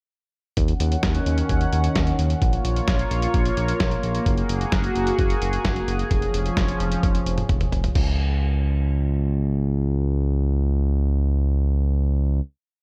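Wistful yet upbeat synth-pop, a short complete piece with a dark production and digital ambience, where a shimmering chorused pulse-width pad holds sustained chords over Ebm7, Bbm, Gbadd9 and Db/F, a smooth detuned synth bass pulses in eighth notes and rings on through the final note until 12.4 seconds, and a muffled, pitched-down lo-fi sampler-style drum kit with a thumpy kick keeps a straight drum-machine beat before a fill from 7.0 to 8.0 seconds.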